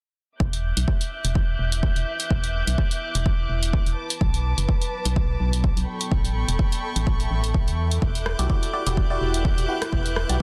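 Cut from a longer piano house track, this bittersweet, energetic passage opens with an up-front punchy kick and a hollow, organ-like FM bass pumping beneath dark, sul tasto studio strings that hold sustained chords through a low-pass filter. A small-room analog drum machine adds hi-hat, rim click and a soft-clipped snare, while a deep, detuned sawtooth pad fades in behind from 1.7 seconds with chorus and reverb. A biting, phased FM electric piano riff with digital delay arrives at 8.4 seconds, all within a dense, heavily limited, dry mix that moves from Em9 through Bm7 and A9 back to Em9.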